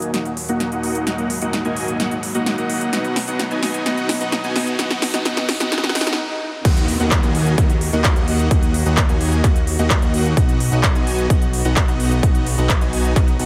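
A huge, detuned supersaw riff with 12-bit sampler grit, sidechain pumping, a filter sweep and digital delay leads this emotional, anthemic festival progressive house excerpt, riding over smooth-topped, earthy bowed chamber strings in the background and an overdriven big-room kit of crisp hats, snare, handclaps and crash. A drum fill, a riser and a swell, drawn from a background effects layer that also holds a downlifter, build toward a stop at 6.2 seconds. A fat, nasal, saturated analog bass then arrives at 6.6 seconds, and a punchy, up-front overdriven kick lands with the drop at 6.7 seconds.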